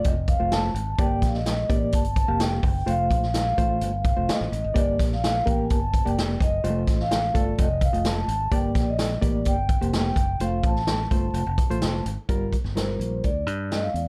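A mellow vibraphone played with soft mallets carries the melody in this short cut from a longer uptempo 1960s-style soul piece, its ringing, vintage tone shaded by a slow motor vibrato and a slapback echo. The piece is passionate and driving, in G minor at 127 BPM in a straight 4/4, with the harmony moving between F and G minor before settling on G minor seventh as a new section begins at 12.3 seconds. Beneath the melody, a reedy, barky electric piano comps through its built-in speakers with light overdrive and a fast tremolo, dropping out at 13.3 seconds. A fingered electric bass adds a warm, direct and punchy low end. The swinging big-band drum kit sits in a roomy studio space, with a punchy kick, a medium-tuned snare and hi-hat. Light reverb gives the whole production a dark, warm glow.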